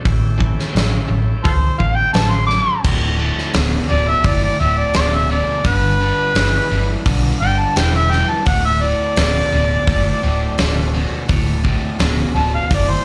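Driving and raunchy, this blues rock and southern rock excerpt catches a power trio live in a small club, heard through the venue's PA with club reverb. A biting, double-tracked overdriven guitar riff with slapback echo sits over a dark, foam-muted, round fingered bass and a big acoustic kit with a fat snare and punchy kick, while a gritty tonewheel organ on a slow rotary speaker holds very quiet sustained chords through A7, D7 and G7. From 1.4 seconds a mellow, up-front harmonica takes the solo, with overdrive, slapback echo, light vibrato, tongue slaps and scooped notes.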